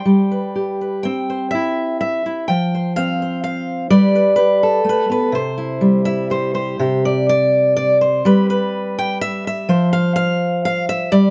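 Light reverb surrounds this short cut from a longer folk piece, where a single fingerpicked steel-string acoustic guitar sits up front with a warm tone and audible finger squeak. In 3/4 at 125 BPM with a loose, rubato feel in C major, the gentle, nostalgic playing spans C3 to G5 and moves through G, C, Fsus2, then back to G and C. A second passage opens at 6.8 seconds on Csus2, passes through a chordless moment at 8.3 seconds and settles on F5 before the clip ends at 11.3 seconds.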